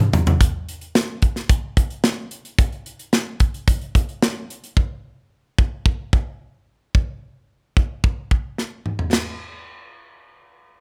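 A straight pop groove in 4/4 carries this short, uplifting piece, played on an acoustic studio drum kit with a punchy kick, a medium-tuned snare, hi-hat, toms and crash cymbal sitting up front. The kit sounds airy and polished in a small room with light reverb. A drum fill opens the piece and another arrives at 8.6 seconds, just before the drums stop at 9.3 seconds.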